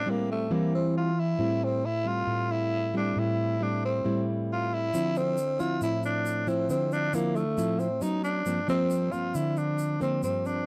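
A growling tenor saxophone carries the melody up front in this breezy, sophisticated bossa nova excerpt at 136 BPM, its breathy, raspy subtone tone shaped by vibrato, scooped notes and a soft attack. Close beside it, a fingerpicked nylon-string guitar adds classical-style accompaniment over chords moving from Am7 to Dm9, then Bmadd9/F# and Gm7. A grainy, compressed tube shaker joins at 4.9 seconds, all within a dry, close 1970s-style studio sound.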